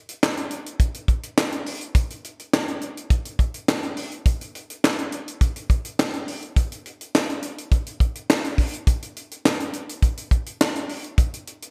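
A tight, up-front acoustic funk drum kit with a high-tuned snare, tight kick, hi-hat and handclaps, its natural small-room sound treated with gated reverb, carries this late-night, danceable straight 4/4 groove at 104 BPM through the whole cut from a longer piece, framed by light reverb and bright 1980s-style digital production.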